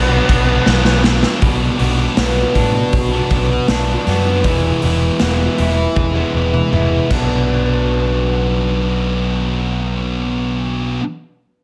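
A thick, double-tracked fuzz guitar sits up front in this dark, angsty quiet-loud alternative rock excerpt, grinding out a bright, distorted riff at 79 BPM in B dorian over chords that move from Bm to E at 4.4 seconds and back to Bm at 7.1 seconds. A dark octave-fuzz lead guitar states a brief melody with plate reverb before stopping at 1.0 second, and at 1.4 seconds a slightly broken-up electric guitar through a small old amp takes up picked arpeggios, shaded by plate reverb and analog delay. Underneath, a picked electric bass runs throughout with a growly, punchy, amped tone. A raw garage drum kit, saturated and gritty with a rolled-off top, a punchy kick and a medium-tuned snare, plays crash, hi-hat and toms in a bright stone room that pumps, with fills around the start and again leading into the closing section, and drops out at 7.3 seconds. The whole performance sits in a moderate large studio reverb.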